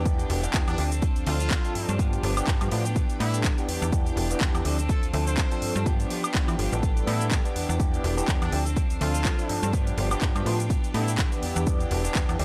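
A dry, gritty hardware recording with digital ambience carries this groovy, funky filtered disco house excerpt at 124 BPM in D dorian, swung on the sixteenths and cycling through Em7, Dm7, G7 and A9sus4. A punchy, overdriven electronic kick sits up front with a house kit of handclaps, bright hats, shaker and woodblock, while a snappy FM bass with a metallic attack, a barky electric piano with fast tremolo and phaser through a combo amp, and a slightly broken-up picked guitar riff with analog chorus all pump with sidechain compression. A very quiet, lush string machine holds sustained chords underneath, and a brilliant, tight horn section plays the melody in the background with analog delay from 0.7 to 11.1 seconds.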